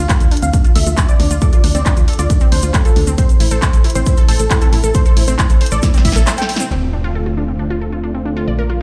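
At 136 BPM in a straight 4/4, this euphoric, emotional uplifting trance excerpt in D minor drives a heavy, up-front kick under a punchy analog drum machine's claps, hats and snare, a grainy shaker in the background and a round, dark FM bass, while a detuned supersaw stab melody and bright unison pluck arpeggios pump with sidechain and dub echo, the pluck moving through a filter sweep, over a drum fill, before a break at 6.3 seconds gives way at 6.7 seconds to a silky analog string pad and an electronic impact, all set in a stone room reverb on a big sound system.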